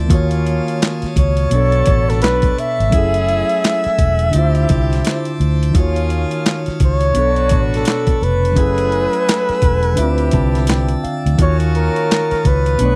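A boom bap sampler-style drum kit carries a relaxed 85 BPM pulse in 4/4 with a 16th-note swing, its thumpy kick, medium-tuned snare, handclaps and hi-hat sounding gritty and compressed, up front in a small room. This late-night, smooth neo-soul and R&B fragment, cut from a longer piece, rests on a dark, round, foam-muted fingered electric bass, while a mellow tine electric piano supplies clean accompaniment and adds a fill from 10.0 to 11.4 seconds. Beneath them a pipe organ plenum holds full, brilliant chords with baroque voicing and a touch of chiff, and a tight, clear horn section punctuates with vintage jazz-style stabs. From 1.2 seconds a trumpet with bucket mute carries the melody up front, veiled and dark, with vibrato, scooped notes and a slapback echo. The harmony cycles through minor ninth chords, Ebm9, Bm9, Gbm9 and Dm9, and the whole is captured as a dry, close, 1970s-style studio recording.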